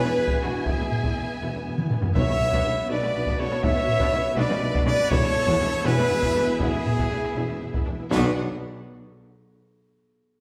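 The recording sits in a wet, reverberant hall, giving this dramatic, epic film-score excerpt a spacious, resonant sound. It moves at 81 BPM in a straight 6/8, in B dorian, with the harmony shifting between E and Bmadd9. A rich studio violin section carries the melody in the background, shadowed by an airy, mellow flute ensemble and a very quiet, lush second violin line, while a smooth viola section adds soft accompaniment. Distant French horns, a portamento-laden string section and a close-miked trombone section hold sustained chords. A bright solo trumpet cuts in with stabs, and an up-front taiko ensemble struck with hard sticks drives the rhythm, with a drum fill at 1.8 seconds before crisp timpani enter at 2.2 seconds. A dark, woody cello section, double basses and a roomy tuba anchor the low end.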